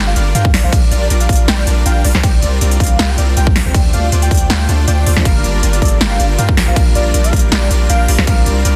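A half-time future bass groove at 159 BPM with a light 16th-note swing pulses under an emotional, dreamy Gm7–Bb6–C9sus4–Dm7 progression, where a punchy, up-front electronic kick and a big-room dance kit of crisp hats, snare and crash drive a deep, sine-like 808 bass, huge detuned supersaw chords and pumping sidechain, while a velvety synth melody with tape echo and 12-bit grit, an airy arpeggiated lead with chorus and delay, and a faint shimmering ambient pad sit in the background, joined at 5.2 seconds by a clear, vintage grand piano in a dense, heavily limited, nearly dry mix.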